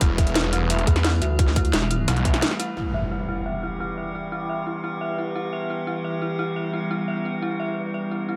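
Lightly reverberant and up front, this dark, tense excerpt of technical drum and bass at 174 BPM in E minor opens on a drop where a tight electronic kick, cracking snare and metallic hats drive beneath a snarling, growling distorted saw bass and a brief pulsing pluck wobble bass, all over an eerie, inharmonic metallic drone with phaser and chorus and a mellow, detuned synth bell arpeggio with tape echo; after a band accent and short break at 2.4 seconds, the beat and basses drop away as an electronic impact hits at 2.8 seconds and a filter sweep moves across the bell against the pumping drone until 8.4 seconds.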